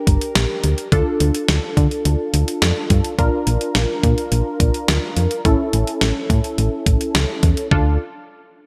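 Cool and driving, this short synth-pop excerpt moves at 106 BPM in straight 4/4, in D harmonic minor over a Gm, Dm, Bb and A progression. A funky, detuned sawtooth polysynth comp with a filter pluck, a moving notch and chorus sits up front from 0.0 seconds, while a punchy, round FM bass with a fast, decaying attack and a dark tone joins at 0.1 seconds. A clean 12-bit drum machine with a thumpy kick, fat snare, hi-hat and a tape-warm, sampler-style character rides gated reverb, all within a light reverb overall.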